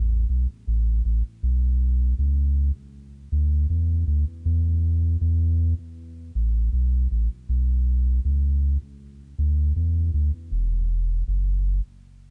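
Hypnotic and deep, this fragment of a reggae piece in B minor moves at 79 BPM in a straight 4/4 and features a round, sine-toned sub bass playing alone from 0.0 to 11.8 seconds between E1 and E2, its fast attack and sustained, mellow notes sitting up front in a dry, dark mix tuned to A4 = 443 Hz, with a new section arriving at 7.5 seconds.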